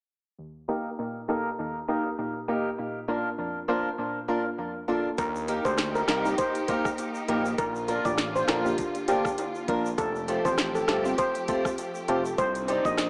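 A shimmering steel pan carries the melody from 5.2 seconds in this tough, bouncy dancehall excerpt, joining a soft, round, dark pluck under a filter sweep and a boxy, fingerpicked swing-style acoustic guitar playing arpeggios with finger squeak, both heard from the opening. At the same moment an electronic afro-pop drum kit with knocking kick and sharp snare arrives, along with a fat, saturated analog bass, a lush bowed string section pumping in the background, and hard-handed egg shaker and timbales, all in an echo-heavy small-room mix with spring reverb and a small-speaker sound.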